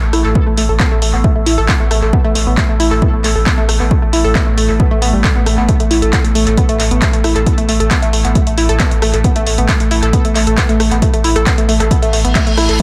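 A bright, wave-folded analog pluck sits up front, playing a detuned, chorused riff with dub echo and sidechain pumping over an A5 chord in this excerpt of driving, hypnotic, industrial peak-time techno at 135 BPM. A thick, saturated sub bass and a nasal, resonant drone with moving overtones, chorus and built-in reverb in the background run throughout. The layered drum kit of handclaps, pumping hi-hats and rim click comes in at 0.1 s with analog delay and large-room character, a punchy, tape-warm electronic kick joins at 0.4 s, and an electronic reverse cymbal arrives at 12.1 s, all within an echo-heavy digital ambience.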